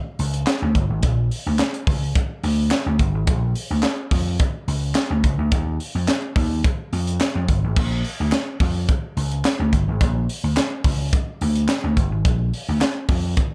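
A straight 4/4 funk groove at 107 BPM in Bb mixolydian, tuned to A4 = 445 Hz, struts with energy through this cut from a longer piece. An amped vintage slap bass sits up front in a low G1 to F2 range beside a crisp acoustic fusion kit of bright cymbals, a high-tuned snare, a punchy kick, hi-hat, crash and handclaps, with both parts entering at 0.2 s in a pumping small room touched by light reverb.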